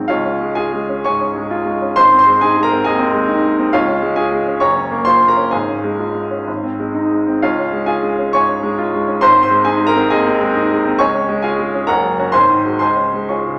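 A clear baby grand piano opens the recording alone at 0.0 seconds and carries this classical virtuoso piano study by itself until it ends at 13.6 seconds, cut from a longer piece. The mood is sparkling and heroic, set in Db major at a tempo between 121 and 140 BPM in 4/4, with a rubato feel that lets the pulse stretch and give. The piano covers a broad range from Gb1 up to Db6, sitting up front with a polished, present tone and long sustain. The harmony moves steadily between Db and Ab, colored along the way by a Gbmaj7, a Db chord over Ab and a brief Ab7 that resolves home to Db at 12.8 seconds. A wet recital hall reverb surrounds the instrument, giving each phrase a lingering, spacious tail.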